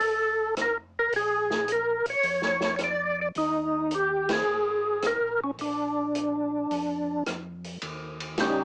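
A swinging 4/4 groove at 108 BPM drives this short soul jazz organ trio cut, lifted from a longer piece and carrying a bluesy mood. A vintage drum kit keeps time on hi-hat, ride cymbal, rim click and snare, its dark cymbals and medium-tuned snare sounding natural and rolled-off in a small room. Beneath it, a mellow tonewheel organ carries the bass line low in the mix, round and clean with chorus vibrato and a slow rotary speaker. Up front, a percussive tonewheel organ plays the melody between G3 and D5, fat and lightly overdriven, with second-harmonic percussion, audible key click, chorus vibrato and slow rotary swirl. The harmony moves from Bb5 through Ebadd11, Absus2 and Bb to Eb7 near 7.8 seconds, with a band accent landing at 4.2 seconds. The whole trio has a homespun cassette character, heard through a moderate booth ambience and a small-speaker sound.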